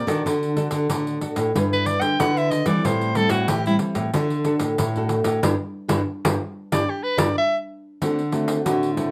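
A clear soprano saxophone leads this joyful, lively samba and choro fragment in G major at 93 BPM, carrying the melody up front with light vibrato, subtone, scooped notes and a smooth top in a jazz-style solo. Beneath it, a fingerpicked nylon-string guitar plays the accompaniment with a classical touch and audible finger squeak, while a second, darker nylon-string guitar holds the bass line. A jingly pandeiro joins at 0.1 seconds, sounding acoustic and set in a small room. The band adds an accent from 5.4 seconds as the saxophone's solo runs to 8.0 seconds, after which a mellow, close-miked trombone takes a short jazz-style solo with light vibrato until the cut at 9.1 seconds. Chords move through D, G6, Am7, D and G5 before landing on D7, and a moderate studio reverb gives the ensemble a gentle sense of space.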